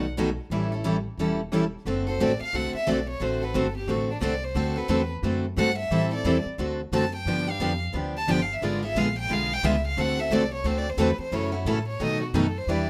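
This is a playful, lively slice of acoustic string swing in the jazz manouche style, moving at 178 BPM in 4/4 with a swung eighth-note feel in D mixolydian. Two picked steel-string acoustic guitars carry the accompaniment throughout. One is bright with fresh strings and sits up front with a touch of plate reverb, while the other is a full-bodied jumbo with old strings and a woody tone. Beneath them, a thumpy pizzicato upright bass holds the low end. The violin sounds briefly at 0.0 seconds, then returns at 2.1 seconds to take the solo over chords such as D7, Am7, G7 and a G#dim7. The violin is intimate and close, played sul tasto with an airy bow, soft attack and light vibrato. The whole has the rough quality of a home demo, with moderate studio reverb, and it is cut from a longer piece.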